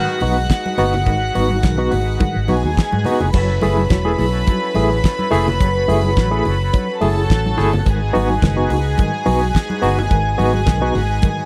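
A barky tine electric piano sits up front, its bright, lightly overdriven tone pulsing with fast tremolo through a combo amp as it carries the accompaniment in this danceable, glamorous disco excerpt at 106 BPM in F# dorian. Beneath it, a vintage muted fingered electric bass gives a round, foam-muted, amped low end, and a damped 70s drum kit brings a fat snare, tight kick and dark cymbals with a rolled-off top, both entering at 0.2 seconds. A dark studio string section plays a second line with a soft, sul tasto attack, its floating ensemble sound given a tape echo. An overdriven tonewheel organ holds gritty, thick sustained chords in the background, colored by chorus vibrato, percussion and a slow rotary speaker, while ringing, medium-tuned congas played with soft hands also sit in the background. The chords move from G#m7 to F#m7 at 3.3 seconds and return to G#m7, all within a dry, close 1970s-style studio sound.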